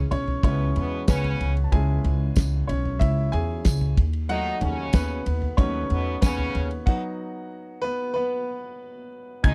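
A straight 4/4 pulse at 93 BPM drives this dramatic, earnest piano-driven pop piece. Up front, a damped 70s drum kit with a fat snare, tight kick and dark cymbals sits beside a woody, thumpy pizzicato upright bass, while a clear, polished baby grand piano takes the solo over C#m, D#dim and B chords. A distant, nasal muted French horn section carries a second line, and a jingly tambourine sounds from 1.1 to 6.4 seconds. The band hits a stop at 6.9 seconds, all in a dry, close 1970s-style studio sound.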